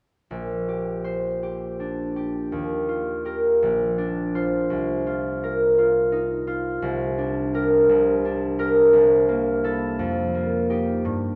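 A solo concert harp carries this short classical excerpt, its mellow, ringing tone sitting up front from 0.3 seconds until it stops at 11.4 seconds. The mood is graceful and dreamy, moving at a slow 56 beats per minute in a lilting 6/8 with uneven beats and free rubato. Set in Bb major, the fingerpicked harp spans from a deep Bb1 to C5, moving through rich extended harmonies such as Bb69, Ebadd9, Cm11 and C13 before settling on F11. The sound is dark and warm, placed in a moderate scoring-stage reverb that lets each plucked note bloom and linger. Cut from a longer piece, it feels like a dreamy, suspended phrase.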